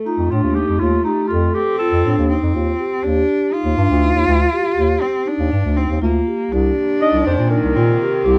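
A dark, close-miked bass clarinet anchors this restless, hypnotic contemporary chamber excerpt in 7/8 at 242 BPM (eighths), its vibrato and scooped notes up front beneath a breathy clarinet melody with a subtone and soft attack that pauses at 2.3 seconds and returns at 7.0. Soft-mallet vibraphone rings out mellow arpeggios with the motor off, while a smooth bowed cello carries a second line through F7, Ebmaj7 and Cm7. A distant string section with a reedy gut-string tone adds sustained chords from 6.5 seconds, in a production with little reverb.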